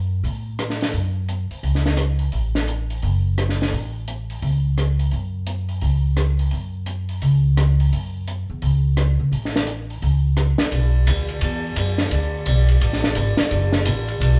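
Intense and searching, this excerpt of modal jazz swings at 172 BPM in 4/4, moving from F# minor into B dorian at 10.7 seconds. A woody, pizzicato upright bass with steel strings sits up front alongside a compact cocktail drum kit whose dark cymbals, high-tuned snare, rim click, hi-hat and ride have a smooth, rolled-off top. The band plays live together in one room with light reverb, giving the duo a close, up-front sound.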